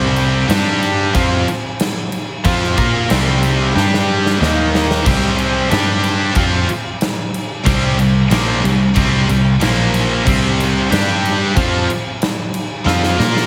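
Hard rock at 92 BPM in 4/4, anthemic and energetic, built on power chords like G5, C5 and Eb5 from stacked guitar riffs: an up-front high-gain distorted guitar, a scooped high-gain guitar with slapback echo, and a double-tracked distorted electric guitar sitting in the background that drops out at 5.1 seconds and returns at 10.3 seconds. Beneath them a round, foam-muted picked electric bass gives a punchy low end, while a big acoustic drum kit enters at 0.2 seconds with a punchy kick, medium-tuned snare and bright crash cymbals, rolling into drum fills at 3.7 and 12.9 seconds. The mix carries a moderate concert hall reverb for a big arena sound, and the passage is cut from a longer piece.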